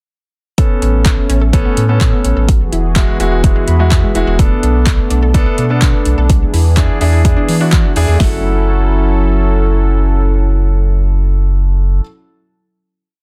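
Driving and bittersweet, this short dance-pop piece in F# minor moves at 126 BPM in a straight 4/4, with a four-on-the-floor deep house drum kit up front, its deep kick, punchy snare, handclaps and metallic hats given an overdriven edge. A round sine sub bass plays off-beat lines with a fast attack, pumping against the kick, while a clear concert grand piano adds syncopated chord stabs in close voicing, its audible action noise and long sustain lending an intimate, polished presence. Beneath them, a smooth, warbling analog pad built from detuned sawtooth and wave-folded tones holds sustained chords with a soft attack and chorus, also pumping with the beat. A very quiet unison pluck, lush and full-bodied with a noise layer, runs a patterned arpeggio in sixteenths through the Aadd9, Eadd9, Bm7 and E7 changes, and the piano steps forward with a fill at 3.4 seconds. The drums drop out at 8.3 seconds, leaving the remaining parts to ring on a final F#m7 chord in a dry, dense and heavily limited mix.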